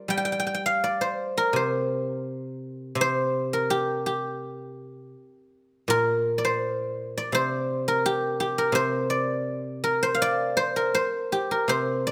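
Elegant and longing, this short fragment of Chinese traditional music features a guzheng playing solo for its full 12.1 seconds. The playing moves in a loose, rubato feel over a 2/4 metre, drawing on the yu mode and reaching from Bb2 up to G5. Played with fingerpicks, the acoustic guzheng has a silvery, ringing tone that sits up front. A new section begins at 5.9 seconds, giving the brief passage two distinct parts. Close, detailed microphones catch every nuance of the strings, and a light reverb adds a gentle sense of space.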